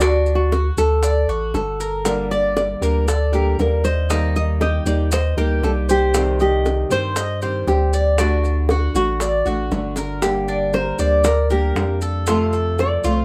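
A straight 4/4 groove at 117 BPM in G harmonic minor carries this nostalgic Cuban son and guajira excerpt, with tight, high-tuned bongos and grainy, mellow maracas riding over a deep, punchy sub bass that sits up front with a pitch-drop attack. A fingerpicked nylon-string guitar carries the classical-flavoured melody while a bright, metallic tres picks arpeggios on its doubled strings, and a second, smaller nylon-string guitar joins as accompaniment at 2.0 seconds. The chords move from D through Gm, Eb and Cm, and a drum fill at 10.0 seconds leads into a new section on Gm and F, all in a light reverb.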